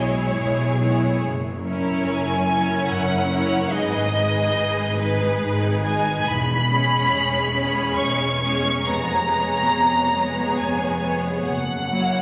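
Tender and warm, this slow romantic movement for string orchestra moves at 70 BPM in an unhurried 3/4, breathing with a gentle rubato. A lush first violin section carries the melody up front, its bowed tone smooth and even with a singing vibrato, reaching up to C#6. Beneath it, a second violin section traces an expressive, distant line, while the violas supply a rich, rounded accompaniment. The cellos sit close and focused in the low register, joined by a clear, lightly vibrating double bass section that anchors the harmony from far back. The harmony drifts through minor colours such as G#m and C#m7/E before settling on F#7 near 11.5 seconds, all bathed in the long, wet bloom of a scoring stage reverb in this brief cut from a longer piece.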